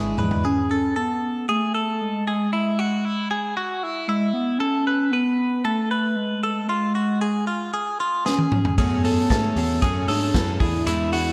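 Wistful and bittersweet, this short cut from a longer piece of jangly indie pop moves at a straight, steady pulse and sits in a lush, hall-drenched space that gives it a big arena sound. A warbling, detuned synth lead built from square and sawtooth tones carries the melody throughout, up front and treated with chorus and vibrato for a nostalgic, vintage feel. Beneath it, a bright, twangy clean electric guitar recorded direct plays compressed arpeggios through phaser and slapback echo, running the whole way. After a brief drum fill and opening flicks of twelve-string acoustic guitar and bass, the dark-cymbaled vintage kit returns with a second fill at 8.3 s. The shimmering, octave-doubled twelve-string, a round, foam-muted bass and a reedy, worn, slightly out-of-tune electric piano then enter at 8.8 s, with chords drifting from Amaj9 toward F#madd9 and a closing E7.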